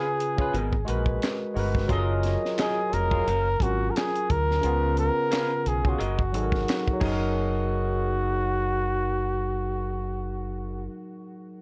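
A tight, dry funk kit with handclaps and bright cymbals sets a swung 88 BPM neo-soul groove in F# major, dropping out at 7.2 seconds, while a deep, round dub bass entering at 0.5 seconds adds punchy transformer saturation beneath chords moving from C#7 through G#m9 and F#maj13 to a closing F#69. A barky tine electric piano with light overdrive and lush chorus carries the accompaniment, and a slightly broken-up, lo-fi guitar through a small old amp traces a compressed second line in the background. Up front, a breathy, whispered flugelhorn with soft attack and light vibrato sings an intimate, sensual melody through tape echo, all wrapped in moderate reverb and the warbling pitch drift of worn cassette tape, in a short section cut from a longer piece.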